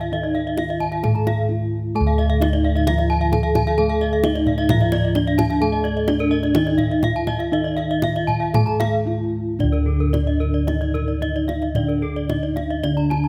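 In a straight four-beat pulse, this ceremonial, shimmering Balinese gamelan excerpt sets a mellow bronze metallophone melody, struck with padded disc mallets and ringing with the shimmering beats of its paired tuning, over a lower metallophone accompaniment played with a wooden mallet and dark, round bossed gongs that sit up front in the bass. Two bright metallophone parts played with horn mallets weave arpeggios above, one close and full and the other airy, while a tight, dry kendang, struck with hard hands, drives the groove and adds a drum fill at 1.4 seconds. After a break at 8.8 seconds a new section begins at 9.6 seconds, all captured with close, detailed microphones and light reverb in a fragment cut from a longer piece.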